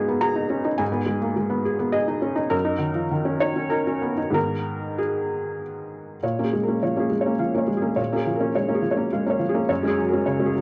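A small-room home cassette recording with light reverb carries this reflective, melancholic excerpt of neoclassical minimalist piano in G# dorian, tuned to A4 = 435 Hz, where a solo felt-muted upright piano, sitting up front with a soft, mellow, intimate tone, short sustain and audible action noise, plays in a rubato 3/4 around 94-107 BPM across a range of F#2 to A#5, moving from G#m through D#m7/F# in the opening section before a second section from 6.2 s turns to A#m7 and settles on F#sus2 at 9.7 s.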